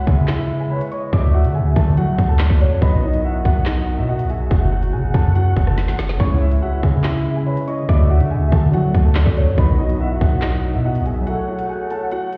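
This tense, cold drill excerpt rides a half-time feel in 4/4, driven by an up-front electronic drum kit with a hard-clipped kick, woody snare, crisp hats, handclaps and rim clicks, plus a short fill around 5.8 seconds. A deep, sine-toned 808-style bass sits equally forward, its long notes decaying under a chord cycle of C#m, D, B and F#m, and it drops out at 11.3 seconds for a closing break. A dark, mellow concert grand piano carries the melody with short sustain and tape echo, alongside a velvety, detuned synth lead playing a second line with chorus and vibrato. Beneath them a distant woodwind section holds soft, roomy chords in a classical style. From 6.1 seconds, warbling lo-fi synth keys join as nostalgic accompaniment, colored by chorus and phaser, while the whole mix sounds muffled, as if heard through a wall, with stone room reverb.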